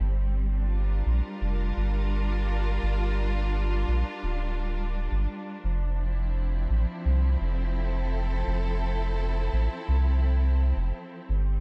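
A deep, round dub sub bass sits up front from the opening moment, its soft, fast-attack tone sustaining beneath a distant, lush studio string section that holds bowed chords with vibrato. This meditative, spacious ambient dub fragment moves at 85 BPM in G dorian, shifting from Gm7 to Fmaj7 at 5.6 seconds. A small room ambience frames the sound throughout this brief section of a longer piece.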